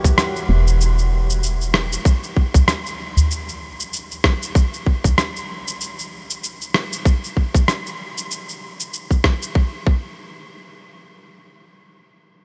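A swung groove at 96 BPM drives this hypnotic, mystical organic downtempo excerpt, where a tight, overdriven electronic kick and a gritty, compressed shaker and rim click sit up front in studio reverb, a deep acoustic udu sounds in a small room until 5.2 seconds, and a woody, round FM bass with a dark, decaying tone pumps under sidechain from 0.5 to 2.0 seconds.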